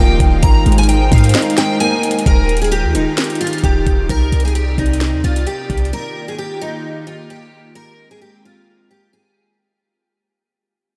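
A half-time trap groove at 131 BPM in 4/4 sets the pace, with a knocking kick, sharp snare and metallic hi-hats from the electronic kit arriving at 0.2 seconds beneath a deep, boomy, sine-like 808 bass with a fast attack and mellow decay. This short hip hop cut in Eb major feels triumphant yet wistful, moving through Abadd9, Ebadd9 and Cmadd9 chords. A bright, full-bodied picked steel-string acoustic guitar carries the melody, colored by analog chorus. A dark, boxy concert grand piano adds accompaniment until 2.3 seconds, where a brief break gives way to a long fade-out. Throughout, an airy, breathy pad holds soft, warbling chords with a slow attack and its own chorus, while the drums and bass drop away at 5.9 seconds. The whole mix is dreamy and soaked in a huge ambient reverb with a 7.3-second tail.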